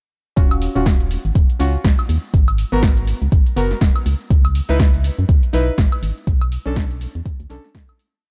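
A deep, four-on-the-floor kick, layered and up front, drives this moody, deep house piece from 0.4 seconds, with a swung groove of closed and open hats, shaker, high woodblock and a punchy, overdriven backbeat snare from a dry analog drum machine. Underneath, a hollow, organ-like FM bass plays a syncopated riff with tube saturation and sidechain pumping. Soft, mellow chord stabs with rootless voicings move through Ebm9, Abm9, Dbm9 and Bm9, shaped by a filter sweep, chorus, digital delay and sidechain pumping, before the piece fades out from 5.6 seconds in a dark, close-sounding production.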